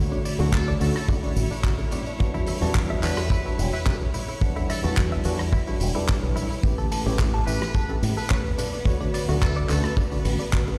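Nu-disco at 108 BPM in E dorian, this sleek, sensual excerpt rides a tight, dry, up-front kick and a bright, envelope-filtered fingered bass that pumps under the sidechain alongside a worn, slightly out-of-tune tine electric piano with 12-bit sampler grit and digital delay, while a clear, biting violin section holds sustained chords over Dmaj7, Em9 and A7. A damped 70s kit with dark cymbals, handclaps, tambourine and rim click sits in small-room ambience, with very quiet, distant bongos and congas behind it. A twangy, clean guitar riff with analog chorus and a buzzy, metal-muted trumpet section carrying the melody from 0.5 s stay in the background, all set in light reverb that sounds played through a big system in a bare room.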